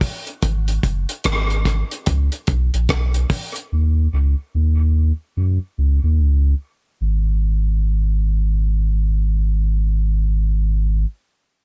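A round, sine-like sub bass sits up front in this meditative, spacious dub reggae piece cut from a longer track. It enters at 0.4 seconds and holds deep, sustained notes with a quick attack through to the end. A dry, muffled acoustic drum kit with a tight kick, rim clicks and a rolled-off hi-hat plays a swung 4/4 groove only until 3.7 seconds, and an echo-heavy mix with small-room ambience leaves plenty of open space, with a new section arriving at 7.0 seconds.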